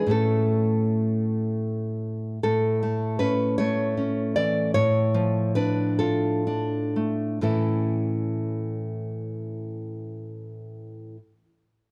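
Tender and warm, this short romantic piece for solo classical guitar is cut from a longer work and moves in a slow, rubato 6/8, with the dotted-quarter pulse ranging from 39 to 53 BPM in A major. A single nylon-string guitar carries everything from 0.0 to 11.2 seconds, fingerpicked across a range from A2 up to D5, with a full-bodied, up-front classical tone and an audible finger squeak. The harmony rests on A, shifts to Dm/A at 4.7 seconds, and returns to A at 7.4 seconds. The tempo slows through the middle of the passage, easing the phrasing before that return home. Light reverb and a dark production give the instrument an intimate glow, tuned slightly high to A4 = 441 Hz.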